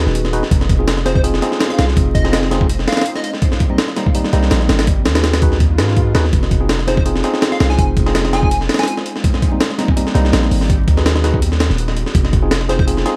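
A gritty, compressed breakbeat kit sits up front in this dark, raw drum and bass excerpt at 165 BPM, its thumpy kick and high-tuned snare carrying a small-room character and a light 16th-note swing. Beneath it, a deep, sine-like 808-style bass holds long decaying notes, while a worn, slightly out-of-tune tine electric piano plays stabs through 12-bit sampler grit and dub echo over a cycle of Abm7, Fm7 and Cm7. A punchy, detuned square-wave unison lead with a filter sweep and dub echo sits in the background from 1.1 s and again from 6.9 s, a very quiet electronic swell enters at 5.7 s, and vinyl crackle coats the dry mix.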